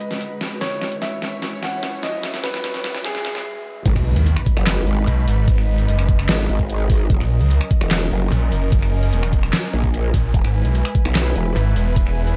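Overdriven drums and a snarling low end define this chaotic, aggressive heavy wobble dubstep excerpt in G# minor at 148 BPM in half-time: a clear concert grand piano melody with tape echo rings over muted, veiled strings, a warbly, nostalgic lo-fi pad and a background riser during a build-up with a drum fill of snaps, claps, metallic hats and a deep snare, and then the drop at 3.9 s brings an impact, an up-front knocking kick, a wobbling, formant-filtered growl bass and a snarling distorted saw bass over chords moving from G#m to F# and E.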